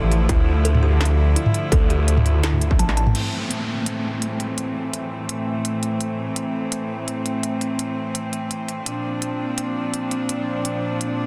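Heavy and cinematic, this half-time drum and bass excerpt at 168 BPM in A phrygian opens on a drop where a swirling, thick, detuned saw bass with phaser and tube saturation drives alongside a distorted electronic kick, while a woody kalimba plays arpeggios through gritty 12-bit sampler tone and dub echo in the background. Bright, earthy bowed cellos hold sustained chords with light vibrato and sidechain pumping throughout, over an industrial kit of clanging snare, crisp hats, crash and toms, moving from Dm to Am after a drum fill at 2.8 seconds. At 3.1 seconds a downlifter sweeps in, and an eerie, warbling metallic drone with chorus and reverb swells in slowly from 3.9 seconds beneath a dense, heavily limited master.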